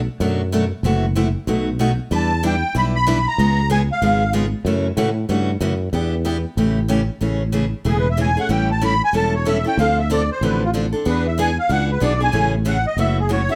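A growly, punchy fretless electric bass opens this lively excerpt of acoustic string swing at 188 BPM, joined at once by a bright, picked steel-string acoustic guitar accompaniment under moderate studio reverb. A reedy, shimmering musette accordion carries the melody in a brief phrase before the music settles into A major at 7.2 s, where the accordion takes a smooth, dark solo over the swinging chords through to the end.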